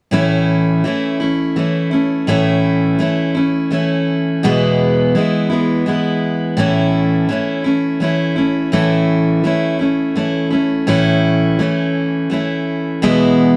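A picked steel-string acoustic guitar plays alone from 0.1 seconds, bright with fresh strings and set up front in a moderate studio room, moving between A and E chords in A major. This country excerpt, in an easygoing 3/4 at 84 BPM with a straight feel, has a down-home mood. The production is dark overall, and the guitar, with its auditorium-style body, plays through to 13.6 seconds.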